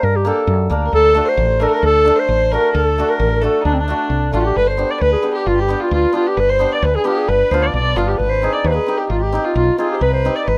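A mellow clarinet sings the melody over a woody, round fretless electric bass from the very start of this soulful, bittersweet klezmer excerpt at 132 BPM in 2/4, soon joined by shimmering hammered dulcimer accompaniment at 0.2 s and a dark, nasal, lightly vibratoed violin second line at 0.9 s, before the music settles into G phrygian dominant at 4.6 s in a close, dry sound.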